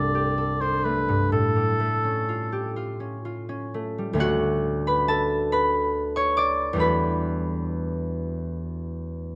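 Luminous and pastoral, this brief passage from a longer classical work is an impressionist duo for oboe and concert harp in D major. It moves in a slow, rubato 6/8, with the dotted-quarter pulse sitting between 41 and 47 BPM. The oboe carries the melody with a warm tone, light vibrato and a smooth top, singing between A4 and D5 before it stops at 2.7 s. The harp accompanies from the start and carries on alone to 9.4 s, its fingerpicked notes mellow and ringing across a range from C2 to D6. The harmony drifts from C6/9 to Aaug7, then settles into Dmaj7 at 4.2 s before an Em11 colours the close. Both instruments are placed up front through close, detailed microphones, framed by a moderate recital-hall reverb.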